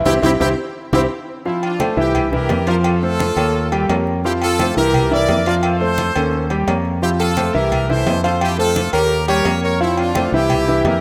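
A concert grand piano and a fingered electric bass open this sunny, joyful salsa fragment, joined almost at once by horns, congas, timbales and agogo bells for a band accent and a drum fill that lead into the main passage at 1.5 seconds. The piano carries the accompaniment up front, intimate and polished, with deep bass and audible action noise, while the electric bass sits beneath it, round and punchy. The horn section takes the melody, brilliant, close-miked and up front, with vibrato and a slapback echo. The timbales and agogo bells ring with a compressed, saturated metal edge, and the low-tuned congas stay very quiet with thick skins and soft hands. Chords cycle through Fmaj7, C7 and Eb7 in a moderate, lush hall reverb, though the mix keeps the rough feel of a home demo.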